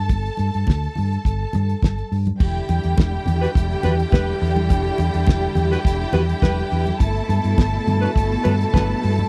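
Driving at 104 BPM in a straight 4/4, this sultry E minor disco excerpt sets a damped 70s drum kit with a fat snare and tight kick up front beside a dark, round, punchy hollow-body short-scale fingered electric bass and very quiet congas, while a lush bowed string section carries a second line from the start, a clear, focused string section adds sustained chords from 2.4 s over Em7, and a mellow horn section with a smooth top punches in stabs from 3.4 s, all in a dry, close 1970s-style studio sound.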